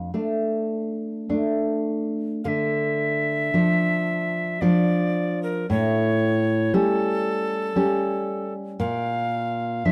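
An airy, woody alto recorder with a crisp, chiffy attack and straight tone enters at 2.4 seconds over a dark, full-bodied fingerpicked nylon-string guitar, finger squeaks and all, that opens alone in this yearning, solemn romantic duo in D minor, moving in a rubato 3/4 at 51-59 BPM through Dm, A7 and Bb5 harmonies, with both instruments close and up front in a dry, detailed sound cut from a longer piece.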